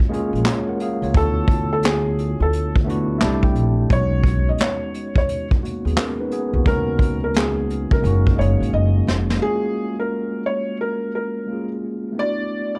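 A soft, intimate felt-muted upright piano carries the melody from 1.2 seconds in this dreamy, mellow lo-fi hip hop excerpt, its plate reverb matched by a clean tine electric piano that plays accompaniment through cassette tape coloring and adds a short fill. Underneath, a swung brush kit with a punchy kick, handclaps and hi-hat shares the groove with a woody pizzicato upright bass, closing with a drum fill before both stop at 9.4 seconds. The two pianos then carry on alone over lush jazzy extended chords, with a dark, lightly reverberant production.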